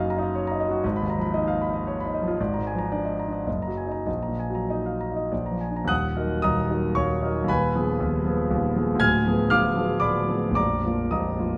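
Close, detailed microphones place a warm concert grand piano up front, its deep bass and natural tone framed by a moderate recital hall reverb of about 1.5 seconds. This is a brooding, stormy romantic character piece for solo piano in E-flat minor, heard as a brief passage cut from a longer work. It moves in 3/4 with a rubato feel, the pulse flexing between 94 and 121 BPM. The playing spans the keyboard from a low Bb0 up to Ab6. The opening half-phrase circles around E-flat minor through half-diminished and dominant seventh colours before settling on B-flat. A second phrase begins at 5.9 seconds and moves through a diminished seventh, ending on a suspended B-flat chord at 10.6 seconds.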